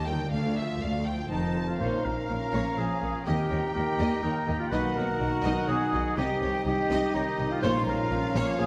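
A swashbuckling, adventurous cinematic cue at 123 BPM in 3/4 with a straight feel, set in Bb dorian, opens with full strings: a rich, lush violin section carries the melody with vibrato and portamento over a second violin line, very quiet violas, a focused cello section, distant double basses and a ringing, fingerpicked concert harp, while soft-mallet timpani with calf heads sound at 0.3 seconds. From 1.3 seconds an airy flute, a roomy oboe and a distant clarinet add second lines, and at 1.8 seconds bright trombones and mellow French horns bring sustained chords as a clear trumpet section punches stabs. The cut moves through chords such as Bbm, Eb, B and Cm, with the timpani returning at 7.6 seconds and the whole orchestra set in a wet scoring-stage reverb.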